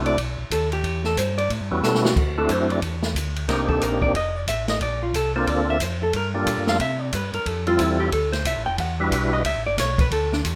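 Soulful and greasy, this short cut from a longer soul jazz organ trio piece swings in four. A percussive tonewheel organ carries the melody up front, its fat, lightly overdriven tone marked by key click and second harmonic percussion, turning through a slow rotary speaker with chorus vibrato until it drops out at 9.4 seconds. A dark, clean hollow-body electric guitar, fingered, is named as soloing across the whole passage while also filling an accompanying role in a higher register. Underneath, a second tonewheel organ supplies the bass line with a mellow, round tone through its own slow rotary and chorus vibrato. The acoustic drum kit has dark cymbals, a medium-tuned snare and a boomy kick, and it sits close in a small room sound, with a fill from 1.8 to 2.2 seconds leading into the second pass through the form. A moderate large-studio reverb ties the trio together as the harmony moves through rich ninth and thirteenth chords.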